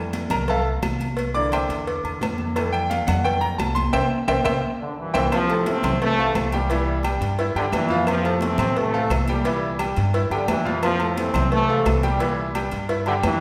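A straight 4/4 salsa groove at 174 BPM in F major drives this joyful, danceable excerpt from a longer piece, with a brilliant, intimate grand piano (its action noise audible) and a thumpy, woody pizzicato upright bass up front over distant, high-tuned congas, a round, low-tuned cowbell, ringing close timbales and agogo bells and background claves, as the band hits an accent from 3.9 s, a drum fill arrives at 4.8 s and a punchy, tight trombone section enters with a smooth-topped, lightly vibrato melody over a steady Fmaj7–C7 alternation in a church-like hall's lingering reverb.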